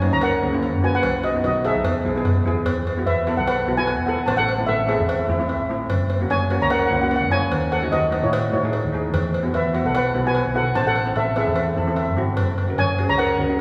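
A mellow, shimmering double-seconds steel pan carries the melody up front, played with soft rubber sticks, while a second steel pan struck with hard rubber sticks fills in the chords with a boxy, small-room tone in this bouncy, sunny calypso excerpt, cut from a longer piece and set in a lightly swung 4/4. Underneath, a round, punchy hollow-body electric bass sits close and dark, and a metallic cowbell keeps time until 13.3 seconds. The harmony moves through suspended, minor and half-diminished colours, and the whole recording is bathed in the long, wet reverb of a church.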